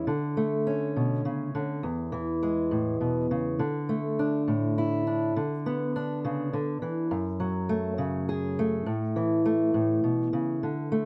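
An old ladder-braced acoustic guitar, fingerpicked and up front, carries this peaceful, gentle folk fragment on its own, its woody, boxy tone and aged strings lending a dusky character. In an unhurried 6/8 at 68 BPM, it moves from D5 and E chords into a second passage from 3.6 seconds that passes through Bm/D and F#madd9 before settling on A. Light reverb and a dark production frame the guitar in this short 11-second cut from a longer piece.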